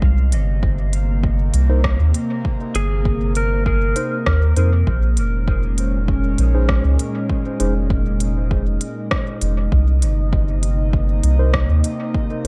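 A round, up-front dub sub bass anchors this deep, hazy ambient dub excerpt beneath a breathy, chorused pad, an overdriven electronic kick and a kit of smooth hi-hats and rim clicks given dub echo and a large-room sheen, while a mellow tine electric piano with 12-bit sampler grit drifts in the background from 1.7 seconds and a dark, clean lap steel slide melody echoes briefly from 2.8 to 4.5 seconds over minor-seventh and eleventh chords in an echo-heavy digital space.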